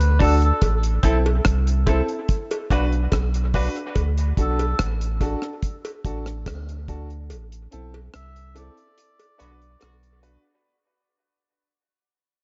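A reedy, breathy melodica carries the melody through this spacious, hypnotic dub reggae excerpt, its nasal, vintage tone trailing dub echo. Underneath, a round, sine-like sub bass sits up front, deep and mellow with a fast attack and long sustain, beside a dry, dark acoustic drum kit whose tight kick, hi-hat and rim clicks have a rolled-off top. A clear but worn upright piano adds woody, slightly detuned stabs with a boxy, lingering sustain, while a clean, twangy, compressed electric guitar accompanies briefly before dropping out at 3.7 seconds, both carrying dub echo. An acoustic cowbell with a small-room character echoes through the groove, and a faint, distant horn section with light vibrato slips in as a second line at 9.4 seconds. The chords cycle through D, A minor and B minor under a steady straight feel, with a break from 0.6 seconds, a band accent from 7.3 seconds and a fade-out across the whole clip, all set in light studio reverb with a softened top end.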